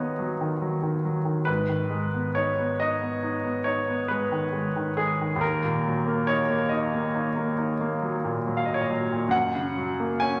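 A clear grand piano plays alone throughout this brief section of a romantic nocturne, its intimate, polished tone sitting up front with long sustain and the mechanical noise of its action audible beneath the notes. The mood is melancholic and mournful, unfolding in a slow triple-compound metre with a flexible rubato feel. The harmony moves from B over D# to Ab minor at 1.5 seconds, settles on Eb minor at 5.4 seconds, and turns toward F# at 9.3 seconds. The piano ranges from the low bass up into the upper-middle register. A wet recital hall reverb surrounds the instrument, lending a lingering tail to each phrase. The passage is cut from a longer piece and ends after about ten seconds.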